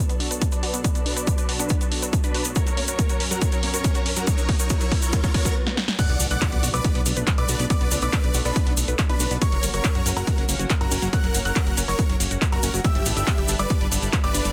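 A straight 4/4 pulse from an overdriven, up-front electronic kick drives this euphoric, driving uplifting trance excerpt, joined by a punchy analog drum machine playing crash cymbal, handclaps, hi-hat and snare, plus a grainy tube shaker. Sidechain pumping runs through the huge, detuned supersaw lead melody, the lush chorused unison pad chords and the warbling unison pluck arpeggios, and tape echo trails the lead and pluck. The opening build-up brings filter sweeps on the lead and pluck, drum fills, a very quiet riser and swell, and a brief stop before the drop and impact at 6.0 s, where a fat, saturated analog bass and a natural-sounding baby grand piano second line enter, all in a dry, dense, heavily limited mix.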